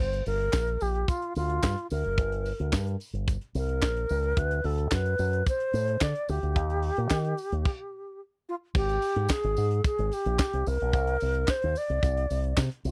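A bright, wooden-headed alto flute and a fingered electric bass open this sultry, danceable disco cut at 110 BPM in a straight 4/4, over a Gm chord that moves to D7 and Eb. The flute carries the melody up front, airy and crisp in attack, with vibrato, lifted highs and a slightly unsteady line, while the bass sits beside it, warm and direct, its tone shaped by an envelope filter. A tight funk kit drives the groove, with a high-tuned snare, a tight kick, hi-hat, handclaps and crash cymbal in a small, mid-forward room sound, and a jingly tambourine sits close and dry in the background. The band drops out for a stop at 7.7 s before a new section begins at 8.7 s, shifting to Abmaj7(no3) and then C7sus2. The whole recording has a dry, close 1970s studio feel with little reverb, and it is clearly cut from a longer piece.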